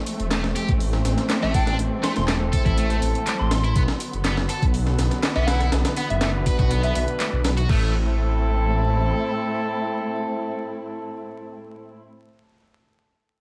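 A straight 4/4 breakbeat groove at 122 BPM in A dorian drives this gritty, energetic excerpt, where a compressed, pitched-up sampled kit with a thumpy kick and high-tuned snare sits up front alongside analog drum-machine handclaps and hi-hat until about 7.8 seconds, over a deep, rumbling detuned saw bass, a double-tracked high-gain guitar riff with dub echo, a catchy square-wave unison lead filtered through a telephone sound, distant brass stabs carrying 12-bit sampler grit, and dark bowed chamber strings pumping under sidechain, all beneath a layer of vinyl crackle as the chords move from Am to Bm and back.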